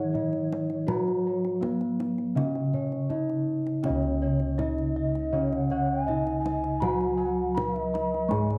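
A soft, up-front bronze metallophone carries the melody, struck with padded disc mallets for a mellow, ringing tone in this serene, shimmering Javanese gamelan excerpt, cut from a longer piece, at 81 BPM in 4/4 with a straight feel in C# slendro. Above it a hollow bamboo bansuri plays a second line, airy and vibrato-laden with a crisp attack and rolled-off highs, while a darker, smooth metallophone struck with a wooden mallet supplies the accompaniment, its paired tuning producing shimmering beats. Bossed gongs play round, airy arpeggios, and a lower set of bossed gongs provides the beating bass. A tight, close and dry kendang, played with soft hands, enters at 0.1 s, and the same short section repeats from 3.8 s, with a second wooden-mallet metallophone adding higher arpeggios from 3.9 s. An echo chamber reverb with a 1.4-second decay gives the metallic instruments a glowing, spacious wash.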